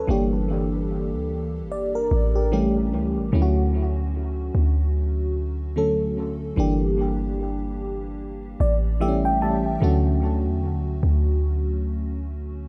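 The recording has an echo-heavy mix with light reverb, giving this short cut from a longer piece a smooth, tender atmosphere. It is contemporary R&B in D major at 74 BPM in 4/4, with a lazy 16th-note swing. An FM electric piano layered with a soft pad carries the accompaniment throughout, its lush, dreamy, slightly detuned tone shimmering through chorus, phaser and analog delay, and it plays a fill between 8.2 and 9.8 seconds. Underneath, a warm 808-style bass sits up front with a deep, boomy, sine-based body, and its notes decay after a fast attack. The harmony cycles through Gm6, A7 and Dmaj7, a bittersweet progression that suits the smooth, tender mood.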